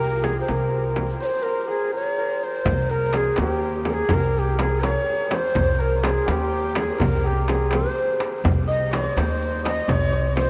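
This Persian modal ensemble piece moves at 83 BPM in a straight 6/8, set in C dastgah shur with a slightly lowered tuning of A4 = 437 Hz, and its mood is melancholic and full of longing. A breathy, end-blown ney carries the melody up front, its close, tongued reed-cane tone trailed by a diffuse ambient delay. A shimmering, hammered santur rings out a second line beneath it, while a woody, thumpy pizzicato upright bass anchors the low end. A frame drum played with soft hands joins at 0.2 seconds, and a tight, vintage-sounding tombak with hard hands enters in the background at 2.7 seconds as the second section begins, dropping out at 10.0 seconds. The whole excerpt sits in a dreamy mix soaked in a huge ambient reverb with an 8.3-second tail, giving the music a distant, suspended quality.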